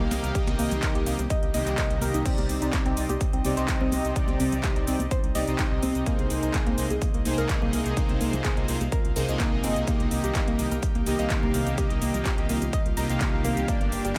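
A punchy, up-front electronic kick drives this 126 BPM progressive house excerpt in a straight 4/4, entering at 0.4 seconds beneath a big-room dance kit of metallic hats, handclaps, shaker and crash cymbal, a very quiet gritty sampler-style kit with a fat snare, and faint congas. The mood is driving and bittersweet, with a deep, dark analog bass carrying tube saturation, full-bodied detuned supersaw stabs out front with delay, and soft round pluck arpeggios echoing through chorus and delay, all pumping against the kick. An airy, breathy pad sustains chords in the background, moving from Eb/C through Cmadd9 and Abadd9/C back to Eb/C.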